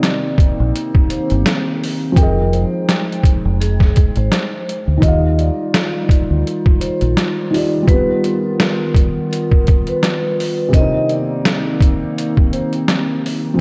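Soaked in lush hall reverb with a cassette-tape haze, this melancholic lo-fi hip hop fragment has a dreamy, swung feel. Up front, a gritty, pitched-down trip hop sampler kit thumps with a compressed kick and a medium-tuned snare, and a round, punchy dub bass joins at 0.6 s before dropping out at 7.1 s. Behind them, a mellow felt-muted upright piano accompanies and a warbling, nostalgic tape-like pad with chorus sustains the chords, while an airy vibraphone, played with soft mallets and slow motor vibrato, carries the melody through tape echo until 12.7 s.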